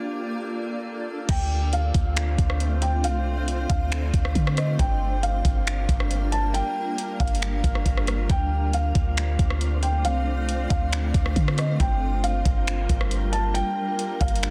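Atmospheric cloud-rap hip hop in G minor at 137 BPM with a half-time feel, hazy and ethereal, where a blurred, detuned granular pad with sidechain pumping and a breathy, wind-like tuned noise texture in the background open alone before a felt-muted upright piano melody with audible action noise and tape echo, a deep, boomy 808-style bass, and an up-front R&B drum kit of knocking kick, metallic hats, finger snaps, rim click and crash, with soft clipping on the snare, all enter at 1.3 seconds over Gm7 and Dm7 chords in a dense, heavily limited digital ambience.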